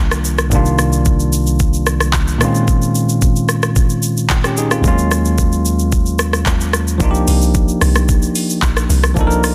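A bell-like tine electric piano provides the accompaniment in this late-night, deep amapiano excerpt, its bright, clean tone sitting up front and direct as it moves through minor eleventh chords on C, B-flat and E-flat, spanning from C2 to Bb4. A smooth, produced electronic R&B drum kit comes in almost at once, with a knocking kick, metallic hi-hats, handclaps, rim clicks and shaker all placed forward in the mix at a straight 111 BPM in 4/4. At 7.0 seconds the music drops into a new section, and a deep log drum bass arrives, round and percussive with an FM character, a noise layer, a fast attack and a dark, decaying tail, sitting low between Bb1 and C2. The harmony returns to C minor eleventh as this bass takes hold, carrying the groove to the end of the cut. Light reverb gives the parts a touch of space, and the dense, heavily limited modern master keeps the sound full and polished.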